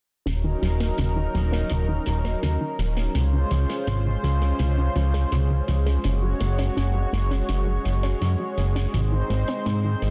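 From 0.3 seconds, a lush, detuned unison pad holds sustained chords with a slow attack and chorus, while a fat analog bass sits up front beneath it. This is a driving, nostalgic synthwave cut at 83 BPM in 4/4 with a straight feel, moving in Eb dorian through Ebm7, Dbmaj7, Gbsus2 and Ab. Behind them, a round, nasal analog pluck spins arpeggios with a fast attack and short decay, colored by chorus and digital delay, and a filter sweep runs across it and across the thick sawtooth-and-square bass throughout. A gritty, saturated acoustic hi-hat with a rolled-off top keeps time in a small studio room. Light reverb frames the parts, and the master is dense and heavily limited in a modern way.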